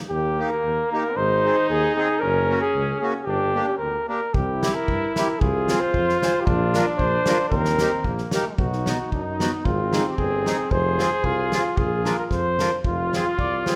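A straight 2/4 pulse at 113 BPM carries this festive, jolly alpine folk dance-band excerpt in Eb major, cut from a longer piece. A warm, smooth-topped flugelhorn sits up front with the classical-style melody, while a mellow trumpet with light vibrato shapes a second line beneath it. A mellow tuba, also classical in style with light vibrato and a smooth top, anchors the low bass, and a reedy, close-miked accordion with slow beating fills in a full, dry accompaniment from 0.4 s. An acoustic drum kit enters at 4.3 s with a natural small-room sound, a punchy kick, a medium-tuned snare and hi-hat, placed up front in the mix. The harmony moves through colourful turns such as Gb and C before settling on Eb, then shifts to a B chord when a new section begins at 8.6 s, all set in a moderate recital-hall reverb.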